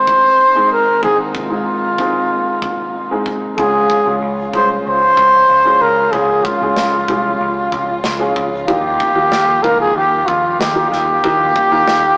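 A rough rehearsal-room sound with tube saturation and a small-speaker character colours this short cut from a longer piece of uplifting piano-driven pop, set in a wet stone room reverb. At 94 BPM in a straight 4/4 in Ab major, a breathy, mellow trumpet carries the melody up front, close-miked and intimate, with vibrato, a soft attack and a digital delay trailing its whispered tone. Beneath it, a woody, smooth upright piano with a vintage, short-sustain voice supplies the accompaniment, while a lush bowed string section holds sustained chords with expressive vibrato in the background. A modern acoustic drum kit plays kick and snare, the punchy kick and medium-tuned snare sitting in a pumping studio room. A picked electric bass with a warm, direct and amped tone enters at 3.6 seconds as the harmony moves from Ab to Db, and the passage then settles onto Ebadd9 at 8.7 seconds.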